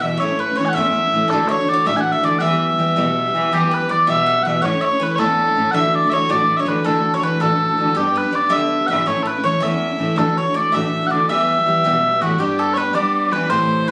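Mellow, sweet small bagpipes carry the melody up front in this spirited, wild Celtic jig in E dorian, moving at 108 BPM in 6/8, with a touch of plate reverb on their continuous tone. A woody mandolin with doubled strings plays a second line in the background, while a picked steel-string acoustic guitar, up front with audible finger squeak, supplies the accompaniment over a distant, earthy bowed cello with light vibrato on the bass. Cut from a longer piece and caught on a phone in a studio room with moderate reverb, the passage circles through A, Dadd9, Em and G before landing on G as a new section begins at 12.4 seconds.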